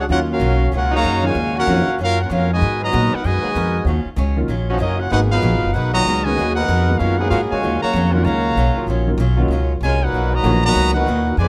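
Brassy and swinging, this big band jazz excerpt moves with a swing feel in 4/4 from its first second. A tight trumpet section carries the melody with a clear, present tone, light vibrato and soft attacks, while a mellow trombone section shapes a second line beneath it. Up front, a woody pizzicato upright bass with steel strings anchors the low end, and further back a boxy, picked swing-style acoustic guitar and a natural-sounding baby grand piano fill in the accompaniment. Another trombone section holds sustained ensemble chords in the background, moving between Ebm9 and Abm9 before settling on Bmaj7 at 10.1 seconds. Close, detailed microphones and light reverb keep the brass crisp and the rhythm players distinct.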